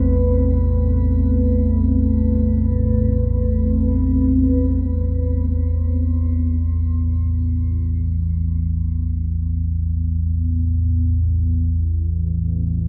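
A deep, ominous drone and a moody, warbling pad open this unsettling, desolate stretch of dark ambient music, cut from a longer piece and floating in free time. The drone sits low and rumbling, its wave-folded sawtooth and triangle tones rising on a slow attack and holding with a long release under built-in reverb and ensemble chorus. Above it, the pad sustains an Amadd9 chord with a vintage, unison sawtooth character and a sine sub octave, thickened by chorus and haloed with shimmer reverb. At 4.8 seconds the pad stops and the harmony settles onto A5, leaving the drone to carry on alone until 12.9 seconds. The whole mix is soaked in a lush hall reverb, giving it a dreamy sense of space.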